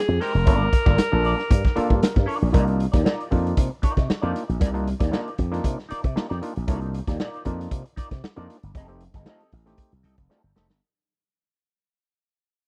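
Funk at 116 BPM in 4/4 with a straight feel, set in C dorian, this cool, driving clip is cut from a longer piece and has the dry, close sound of a 1970s-style studio. A breathy alto saxophone opens with a brief melody between Ab4 and Bb4, its subtone and scooped notes giving a vintage jazz flavor before it drops out at 2.0 seconds. Underneath, a raw garage drum kit sits up front with hi-hat, a punchy kick and a medium-tuned snare, its tone dark and smooth with a rolled-off top, while a growly slap bass through an envelope filter drives the low end. A clean, fingered semi-hollow guitar adds hollow-body accompaniment colored by wah and spring reverb, and a stringy, overdriven auto-wah clav punches in with percussive stabs, including a fill from 1.8 to 2.5 seconds. The harmony moves from Gm7 to Cm11 and then F9 as the track fades out, closing on a short drum fill at 10.3 seconds.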